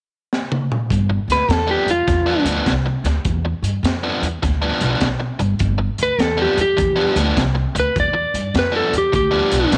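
A gritty, dark fill on a crunchy breakbeat kit with a high-tuned snare and punchy kick opens this laid-back, swaggering electric blues shuffle at 0.3 s, then a woody pizzicato upright bass and a biting, overdriven picked guitar riff settle onto a G7 chord while a compressed, slightly broken-up electric slide guitar played with fingerpicks carries the melody up front from 1.3 s in a dry room.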